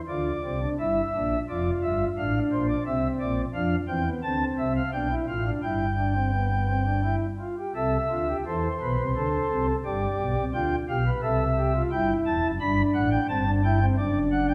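Stately and joyful, this fragment of a longer baroque-style three-part fugue in 3/4 at 87 BPM features a solo pipe organ on soft flute stops, sounding warm and up front with a romantic voicing and tremulant, settling into C major from 3.5 s and ranging from deep low notes to bright upper notes inside the lush reverb of a recital hall.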